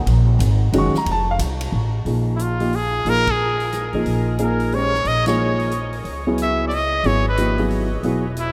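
Spiritual and cool, this modal jazz excerpt swings in 3/4 through a vast, echoing space, with an intimate grand piano, its action noise audible, and a woody, thumpy pizzicato upright bass up front over a natural, big-room drum kit of punchy kick, medium-tuned snare, ride and hi-hat; a bright, present solo trumpet with light vibrato and scooped notes joins at 2.4 s, and the band hits accents at 3.2 and 5.2 s.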